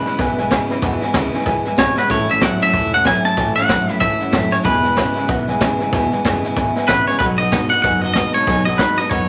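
A bright, compressed twangy electric guitar carries the melody up front in this rowdy, retro rockabilly excerpt at 188 BPM in a swung 4/4 and E major, set over a picked steel-string acoustic guitar, a slightly broken-up riff guitar through a small old amp with spring reverb, a worn, slightly detuned upright piano, a woody pizzicato upright bass in the background, and a brushed jazz kit with a high-tuned snare and boomy kick that plays a fill at 1.9 seconds, the whole mix sitting in a large studio reverb as the harmony moves from E to B at 7.2 seconds.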